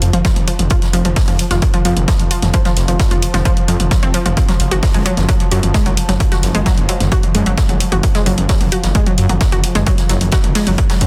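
A punchy, tape-warm electronic kick sits up front in this relentless, industrial stretch of driving peak-time techno at 131 BPM in F phrygian, pushing a thick, menacing detuned saw bass, a bright, chorused analog pluck riff with tube saturation and tape echo, overdriven analog drum-machine hi-hats and toms in a large room, a very quiet acoustic big-band kit's hi-hat and snare, and a deep, moody ambient pad drone in the background, with the bass, pad, pluck and drum-machine parts all pumping to the sidechain as the harmony moves from F5 to Fm at 4.4 seconds.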